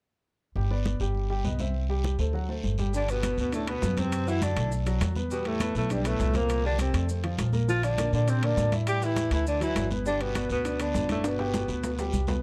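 A sunny, sophisticated Afro-Cuban jazz excerpt opens at 0.6 s with grand piano chords bearing audible action noise and plate reverb, a woody, thumpy pizzicato upright bass up front, soft-handed congas in the background and a raspy guiro. Around 3.0 s a breathy tenor saxophone takes the melody with subtone, scooped notes and a whispered vibrato through plate reverb and analog delay, shadowed by a distant, roomy baritone saxophone second line, while grainy maracas and ringing metal-shell timbales fill out the percussion. A drum fill arrives at 11.2 s, and the recording carries light reverb and the character of cassette tape.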